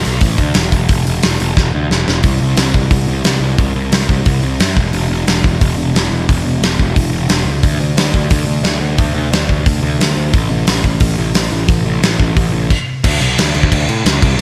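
A straight, driving four-beat pulse powers this rebellious, energetic punk rock excerpt, with a big rock drum kit of crash cymbal, hi-hat, fat snare and tight kick sitting up front in a roomy, mid-forward sound with a rolled-off top. A picked electric bass, overdriven into a growly, bright fuzz, plays low and close throughout alongside the drums. A drum fill at 1.6 seconds leads into a new section at 2.2 seconds, and another shift arrives at 13.0 seconds, all under a light reverb.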